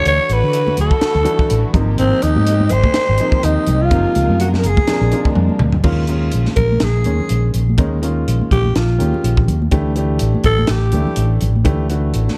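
A raspy, growling alto saxophone leads this bright, slick electric jazz fusion excerpt at 124 BPM with a swung 16th-note feel, up front over a punchy fretless bass with subtle chorus and a crisp fusion kit with bright cymbals and a high-tuned snare. A breathy, mellow flute and a rich, smooth string section sit in the background until 5.4 s and 5.8 s, while a clear, slightly boxy baby grand piano comps through jazzy ninth chords and thin-skinned congas patter softly behind. After a drum fill, the saxophone takes a gritty, scooping solo from 5.9 s in a dark, lightly reverberant mix.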